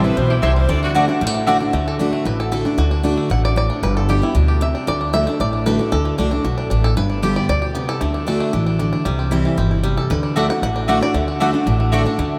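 Bluegrass at a lively, driving 230 BPM in D mixolydian, where a clear, airy-bowed fiddle opens very quietly and drops out at 0.9 seconds, then the bright, twangy fingerpicked banjo carries the lead from 1.7 seconds over an up-front, full-bodied picked dreadnought guitar with audible finger squeak, a woody, growly pizzicato upright bass and round, double-strung mandolin stabs, the band ringing out in a vast, echoing cathedral space.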